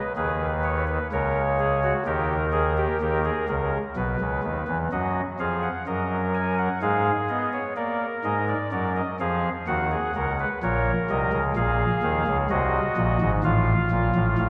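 A straight, unhurried 3/4 pulse at 63 BPM carries this serious, solemn baroque-style three-part fugue, cut from a longer piece, played solo on a chamber organ whose soft reed oboe stop sits up front with a chiff and a tremulant across a span from Ab1 to Ab5. The harmony drifts through G# minor and D#7 before settling into Eb minor at 4.9 s, where the lines move through diminished and dominant chords. A wet church reverb with a 2.8-second tail surrounds the organ in a cavernous, resonant space.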